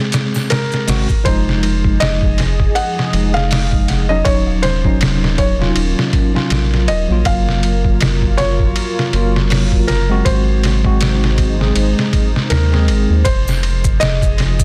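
This dark, melancholic trip hop excerpt at 80 BPM in F phrygian opens with a soft, felt-muted upright piano melody, its action noise audible through tape echo, over a clean tine electric piano colored by tremolo, 12-bit sampler grit and a filter sweep that runs until 1.3 seconds, while a compressed, pitched-down sampler-style drum kit with a thumpy kick sits up front, dry maracas and triangle touch the opening and closing moments, a round, deep analog bass with tube saturation enters at 0.9 seconds, and a moody, detuned analog pad with chorus settles into the background from 2.0 seconds, all within a dense, heavily limited modern master.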